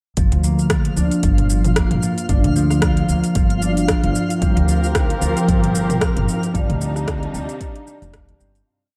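From 0.2 seconds a ringing, fingerpicked concert harp loops a 10-step arpeggio with tape echo over a woody, thumpy pizzicato upright bass riff that pumps against a soft electronic kick and an overdriven deep house kit of metallic hats, rim clicks, shaker and low toms, setting a mystical, meditative organic downtempo groove in G minor at 113 BPM with swung 16ths, while a faint twinkling granular texture shimmers above and a lush, bowed dark string section with gritty 12-bit sampler colour joins at 4.4 seconds before the piece fades out from 5.8 seconds.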